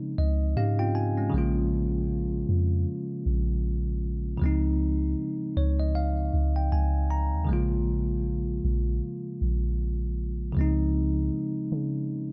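A bell-like tine electric piano and a soft, round 808-style bass open together in this contemporary R&B excerpt at 78 BPM in Bb minor, with a 16th-note swing and a longing, late-night mood. The bright, clean electric piano, heard as if through built-in speakers, plays fills from 0.0 to 1.3 seconds and again from 5.2 to 7.5 seconds over chords moving between Dbmaj9 and Bbm7. The deep, sine-like bass sits up front with a fast attack and decaying tail in a dark, close-sounding production with little reverb.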